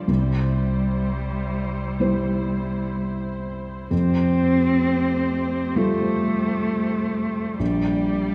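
A slow, rubato pulse at 64 BPM in 4/4 gives this tender, hopeful neoclassical piece for piano and strings, in F major, a gently unhurried feel. A felt-muted upright piano carries the accompaniment from the low register up to the middle. It sits up front with a mellow, intimate tone shaped by thick felt. A single bowed cello, played con sordino, adds a veiled second line with vibrato and portamento, also placed close and forward. Alongside them, a close chamber string section holds dark, sustained chords with a soft attack, sitting lower in the balance. The harmony moves from C to Fadd9 at 3.9 seconds and to Bb6 at 7.6 seconds, and a wet concert hall reverb lends space to this short passage cut from a longer piece.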